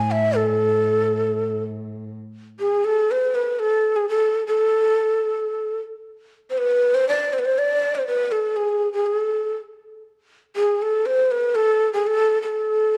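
A breathy, end-blown ney sings a longing Arabic melody with unsteady vibrato and crisp attacks, heard close and up front over a dark, woody bowed cello drone that drops out at 2.2 seconds. The ney carries on alone until 13.0 seconds in this hypnotic fragment, cut from a longer piece. A moderate recital-hall reverb surrounds the playing, and worn cassette tape adds a warbly pitch drift.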